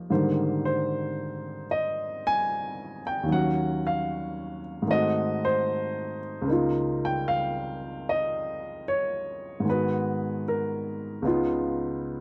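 A slow 4/4 swing in eighth notes carries this intimate, romantic jazz ballad fragment, where a solo baby grand piano sits up front with a natural tone in a dry, close 1970s-style studio sound touched by light reverb, moving through rich extended chords such as Abmaj9#11, Ebm9 and Db6 across about 12.2 seconds.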